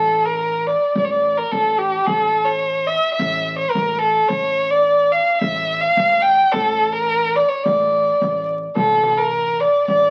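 This Arabic maqam ensemble piece sits in A maqam hijaz at a steady 108 BPM in 4/4, with a straight, hypnotic and melancholic feel, tuned to A4 = 435 Hz. Up front and close, a single bowed violin carries the melody between G4 and G5, its smooth, even tone colored by vibrato and a warm glow. Beneath it, a plucked upright bass on gut strings holds a low A1, sounding woody and thumpy at a much lower level. A clay-shelled darbuka with a natural skin head slips in from the background at 8.8 s, struck with hard hands and heard as a vintage, band-limited texture. The whole passage carries the crackle of a very old 78 rpm record, set in a moderate studio reverb that adds a sense of space, and it is cut from a longer piece.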